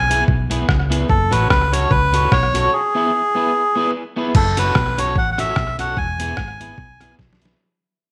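Lightly reverberant digital ambience frames this short, energetic and mischievous ska cut from a longer piece, with a reedy, breathy, close-miked melodica carrying the melody up front over a round, dark hollow-body electric bass and a picked electric guitar at the edge of break-up, touched with subtle chorus and slapback echo. A gritty, pitched-down, sampler-style drum kit with a thumpy kick, medium-tuned snare, rim clicks, hi-hat and crash sits prominently in the mix with its own slapback echo, as the harmony moves between E and F#m under a lightly swung feel. A break arrives at 2.7 seconds, the music fades out from 4.3 seconds, and a drum fill closes it at 7.2 seconds.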